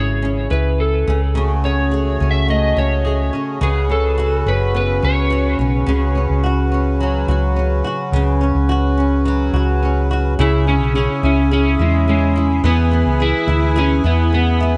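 A straight, even 4/4 pulse carries this reflective, tender acoustic pop excerpt, cut from a longer piece. A round, punchy hollow-body short-scale electric bass sits dark and amped up front, fingered beneath a double-tracked flamenco guitar whose fingerpicked acoustic accompaniment runs throughout. An electric slide guitar carries the melody with a slightly broken-up, warm tone, colored by analog chorus and a diffuse ambient delay; it falls away at 5.6 seconds and returns at 10.4 seconds. A pedal harmonium joins at 1.4 seconds with reedy, breathing sustained chords, close-miked, dry and full, set a little behind the other parts. The harmony moves from C#m through F#madd9/C# and Bsus2 to a Bsus2/C# passage before settling back on C#m and E, all framed by light reverb and gentle studio ambience with a soft, rolled-off top end.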